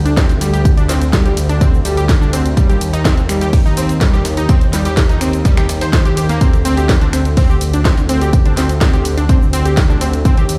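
Bittersweet and driving, this progressive house excerpt rides an overdriven, punchy electronic kick up front over a deep, rumbling detuned saw bass with tube saturation and sidechain pumping, while a round analog pluck with chorus, cassette tape colour and delay spins arpeggios above a house drum kit of finger snaps, hi-hat, ride cymbal, shaker and cracking snare, plus a very quiet, gritty breakbeat sampler-style kit of hi-hat, snare and tambourine, all played through a big sound system in a bare room.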